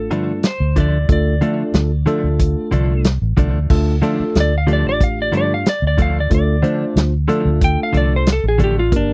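A straight-eighth soul blues groove, set by a tight, punchy soul drum kit and a dark, foam-muted fingered bass, both up front, carries this mournful, brooding excerpt. A worn, slightly out-of-tune tine electric piano, lightly overdriven and phased, fills in alongside compressed, direct-recorded clean guitar stabs with slapback echo, while a clean lap steel sings the melody with slide and volume swells before taking a solo from 3.7 s. The sound is dry and close, in a 1970s studio style.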